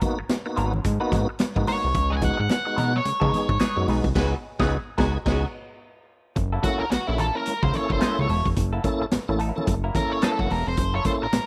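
Funk at 109 BPM in 4/4 with a swung sixteenth feel, this energetic, playful cut from a longer piece sits in F# mixolydian over chords moving from G#m9 to C#9sus4 and then F#7#9. A raw garage drum kit drives it with crash, hi-hat, a boomy kick and a high-tuned snare, its gritty, saturated sound placed up front with a rolled-off top, while bright, damped congas sit in the background and a fat analog bass built from detuned sawtooth and square waves, ring modulation and a filter sweep anchors the low end from 0.2 seconds. A clean, compressed semi-hollow guitar plays accompaniment through wah and spring reverb, and a full tonewheel organ adds stabs with key click, chorus vibrato and a fast rotary speaker. From 1.7 seconds a dark, fuzzed octave-fuzz lead guitar carries the melody with distortion and slapback echo, stepping into a solo at 6.4 seconds. A mellow, loose horn section plays a second line between 4.2 and 5.4 seconds during a band accent. 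The whole has the dry, close sound of a 1970s-style studio recording.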